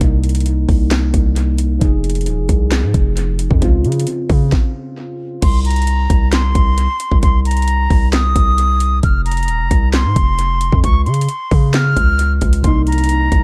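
Hip hop trap at 133 BPM in a half-time feel and C phrygian, this eerie, menacing excerpt from a longer piece opens on a break of muted, felt-like synth keys with chorus and tape echo over a knocking, up-front trap kit of sharp snare, metallic hats, handclaps and crash, and a punchy, heavy 808-style bass, with a brief stop at 4.5 seconds before a reedy silver concert flute with a straight, airy tone and tape echo takes the melody at 5.4 seconds, with the keys returning at 12.6 seconds, in an echo-heavy digital ambience.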